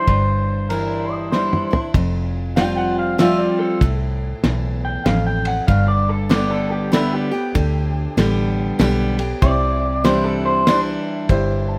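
This honky-tonk and classic country cut, taken from a longer piece, rolls along in a sunny, down-home waltz-time swing. A clean, fingerpicked pedal steel opens with sliding volume swells before dropping out at 1.7 seconds. A bright, full-bodied acoustic guitar sits up front, playing picked accompaniment throughout. Beneath it, a round, foam-muted electric bass pairs with a cloth-damped, thuddy drum kit whose dark cymbals, fat snare and gritty, lo-fi character give the groove a small-room feel. A twangy, slightly broken-up electric guitar through a small old amp enters at 0.7 seconds with a second line, and after the drums take a fill leading into 1.9 seconds, it carries a clean solo over the changes. A woody upright piano joins at 9.4 seconds and adds a brief fill at the close, all in a dry, close sound.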